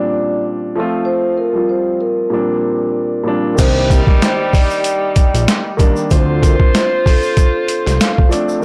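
A gritty, overdriven sampler-style drum kit with a thumpy kick and high-tuned snare kicks in at 3.6 s alongside a fat, saturated analog bass, a tight saxophone section's smooth stabs with digital delay and a grainy egg shaker in the background, joining the dark, vintage-toned grand piano on cassette and the ringing, close-miked soft-mallet vibraphone melody that open this reflective, blown-out boom-bap hip-hop excerpt in C dorian at a swung 95 BPM.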